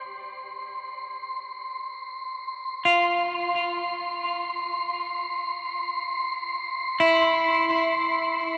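This ambient excerpt in free time opens at once with a semi-hollow electric guitar playing clean, picked arpeggios between E4 and D5 over an F5 chord, while a wind-like tuned noise texture fades in alongside it across the full 8.6 seconds. The guitar sounds bright and hollow-bodied, sitting up front, bathed in lush chorus and a diffuse ambient delay. The synth layer is an airy, breathy, sustained sine-based wash around C6, with a slow attack, a long release and its own built-in reverb. A huge reverb with an 8.5-second decay surrounds the music, and the production is dark and warm. The mood is spacious and melancholic, a fragment cut from a longer piece.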